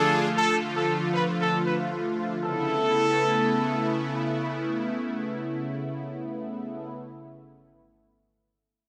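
Unmetered and free-flowing, this carefree, upbeat pop excerpt in A major sets a punchy, clear horn section with a smooth top, light vibrato and dub echo singing a melody from 0.0 to 3.9 s over a detuned sawtooth analog pad with chorus and a soft attack, which holds sustained chords up front until 6.9 s, moving from a drop on Dm into Aadd9 at 2.4 s amid light digital ambience.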